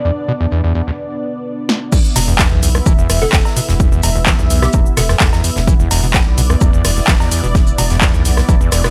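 A squelchy, overdriven acid bass riff drives this gritty, raw acid house excerpt at 128 BPM in straight 4/4, its resonant square-wave tone pumping against the beat from the very start. Above it, a lush, detuned unison pad holds sustained E5 chords with slow attack, chorus and phaser, while a gated 80s acoustic kit with an airy stone-room sound ticks away in the background on hi-hat, shaker and snare. After a short break from 1.0 seconds, a punchy, overdriven analog drum machine with cowbell, handclaps, rim click and crash enters with a drum fill at 1.7 seconds, and the drop lands at 1.9 seconds as an up-front electronic kick joins. A deep, thick sine sub bass, saturated and pumping, fills the low end from 2.2 seconds. Briefly, a hollow, bouncy square pluck with ensemble chorus and analog delay adds a mellow melodic figure between G4 and A4, all in a dry, close mix.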